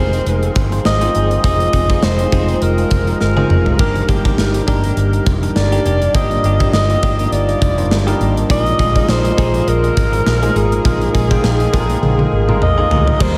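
1980s-style pop at 102 BPM with a light sixteenth-note swing, uplifting and romantic, where a raspy, gritty alto saxophone sings the melody up front through diffuse delay over bell-like tine electric piano washed in lush chorus, a very quiet French horn section holding sustained chords, a twangy, direct-recorded clean guitar riff sitting in the background with chorus and delay, a round, foam-muted fingered bass, and a punchy gated drum kit with bright cymbals that enters at 0.1 s and fills at 3.2 s and 12.0 s, all moving through Fm7, Ebmaj7 and Bb7sus4 in a dreamy mix soaked in huge ambient reverb, cut from a longer piece.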